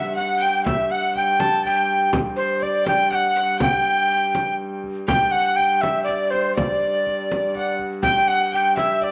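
A rustic, festive medieval dance in triple time, this brief excerpt is led by a close-miked tenor recorder with an airy chiff and a slightly unsteady straight tone, sitting up front above a distant, biting fiddle with light vibrato playing a second line. A dark, nasal hurdy-gurdy holds a low drone throughout, and a deep frame drum played with soft hands enters at 0.2 seconds, its sound compressed and saturated. Everything sits in a small room with a wet spring reverb, and the dance moves into a new section at 5.1 seconds.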